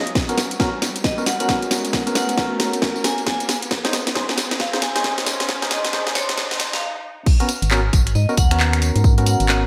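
Bright 1980s-style digital production with a moderate plate reverb frames this skippy, bouncy two-step UK garage excerpt at 135 BPM, where hollow, dark percussive organ stabs with subtle chorus and digital delay build alongside a background riser over a tape-warm house kit (cracking snare, handclaps, finger snaps, hi-hat, tambourine and crash under gated reverb), a punchy electronic kick and a ringing, metallic vibraphone played with hard mallets, until a stop at 6.8 seconds gives way to a drop at 7.3 seconds on a G#m11 chord, with a decaying, up-front organ-like FM bass pumping in from 7.6 seconds.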